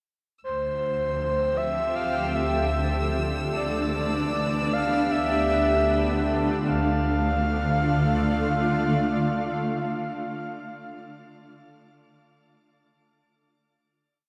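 A slow, straight 4/4 pulse at 77 BPM carries this spacious, melancholic ambient piece in D dorian, where a soft, breathy, flute-like synth lead with vibrato sings short call-phrase motifs up front while a shimmering, ethereal pad enters at 1.4 s with slowly shifting chords, granular texture and an octave-up glow. Beneath them a rich, distant bowed double bass section sustains the root, and a clear, focused violin section fades in on a single held high note until 6.7 s. The whole piece sits in a wet, lush hall reverb and settles onto a final D minor chord from 6.7 s.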